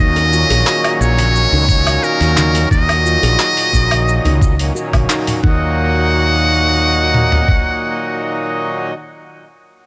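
Organic downtempo in Eb minor at 88 BPM, this short, hypnotic and meditative cut from a longer piece moves in a straight 4/4. Up front, a trumpet with a metal mute carries the melody with a buzzy, thin tone and vibrato, trailed by analog delay, while a reedy, breathing harmonium supplies accompaniment with sidechain pumping. A very quiet string section holds sustained chords with a clear, biting edge, and a soft, woody kalimba plays arpeggios in the background until 5.8 seconds. A dark, round fretless bass anchors the low end, also shaped by sidechain pumping, and a dusty, sampler-style kit lays down handclaps, hi-hat, shaker and woodblock alongside very quiet bongos and congas, with its thumpy kick and toms running from 1.7 to 7.7 seconds, the kit overdriven and set in studio reverb. The band hits an accent just before the harmony settles onto Eb minor at 5.4 seconds, and the whole piece carries the gritty, dry character of a hardware and cassette recording in a small room.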